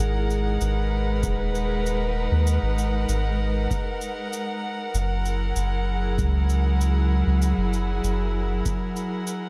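Ambient dub at 97 BPM in G# minor, hazy and spacious, cut from a longer piece, where dark, close sul tasto chamber strings hold sustained chords up front over a round, deep sub bass while a mellow, tape-echoed vibraphone played with soft mallets ringing in the background drops out at 2.1 seconds, a gritty, saturated cabasa enters at 0.3 seconds, and an analog electronic kick with a large-room character comes in at 1.2 seconds as the harmony moves from G#m7 to F#7 under light reverb.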